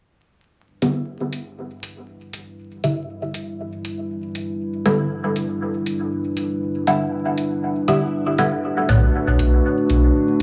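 From 0.6 seconds a dark, moody analog pad sustains Em7 chords with a slow attack, its detuned, wave-folded tone thickened by subtle chorus, setting a hypnotic, cavernous dub techno mood in E minor at 119 BPM in 4/4. At 0.8 seconds overdriven, metallic electronic hi-hats join, ticking through a lightly swung 16th-note feel, and filtered dub chord stabs sit up front with a muted, full-bodied filter pluck, their short decays smeared by phaser and dub echo. The harmony shifts to Bm7 at 8.6 seconds, and at 8.9 seconds a round, deep analog bass arrives with a fast attack and tube-saturated weight. The gritty hardware recording carries transformer saturation, vinyl crackle, light reverb and studio ambience, and the passage is cut from a longer piece.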